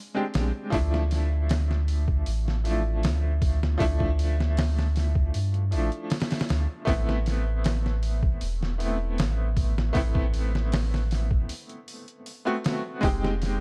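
A bright upright piano opens this brooding, dark trip hop excerpt at 78 BPM, its woody, intimate accompaniment carrying audible action noise and colored by tremolo and tape echo, moving through chords such as Bb7, Dmadd9 and Amadd9. From 0.3 seconds a round sine sub bass sits up front with the sampler-style drum kit, whose pitched-down, gritty sound pairs a thumpy kick and medium-tuned snare with hi-hat. A break arrives at 11.5 seconds before the cut lands on Fm7, all within a dark, digital ambience.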